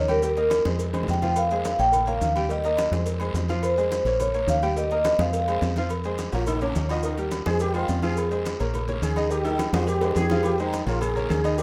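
An up-front, metallic vibraphone with slow motor vibrato carries the melody of this fiery, passionate salsa fragment until 5.7 seconds, and a buzzing, shimmering sitar with sympathetic strings then solos from 5.9 seconds above a bright, woody upright piano with audible action noise, a dark, round fingered electric bass, and a background bed of ringing congas, metal-shell agogo bells and timbales, and grainy maracas, joined by a raspy, distant guiro and tight, distant, very quiet cowbell and bongos, in a rough home demo mix.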